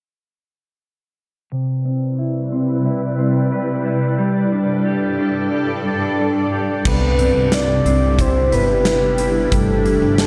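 Bathed in a moderate concert-hall reverb, this dreamy, blissful dream pop excerpt in C major moves at a straight 90 BPM in 4/4, drifting between Cmaj7 and Gsus2. A dark, clean, fingered electric guitar opens with arpeggios at 1.5 seconds under a filter sweep, and is soon joined by a cloudy, evolving granular pad with a slow attack and built-in reverb. At 6.9 seconds a round, full-bodied synth lead with a sub octave, chorus, phaser and vibrato takes the melody, while a woody pizzicato upright bass and a huge arena drum kit with bright cymbals and a punchy kick come in.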